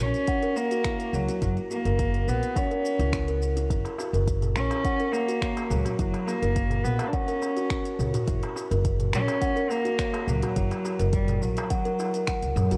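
Worn, warbling cassette tape with light reverb colours this earthy organic downtempo excerpt at 105 BPM in F# major, where a reedy, bowed gut-string cello with light vibrato carries the melody through tape echo over buzzing, thumb-plucked kalimba arpeggios with delay, an up-front pizzicato upright bass with tube saturation and sidechain pumping, a deep electronic kick, a produced afro-pop kit of finger snaps, smooth hi-hats and shaker, and a crisp, distant darbuka played with soft hands that enters at 3.8 s.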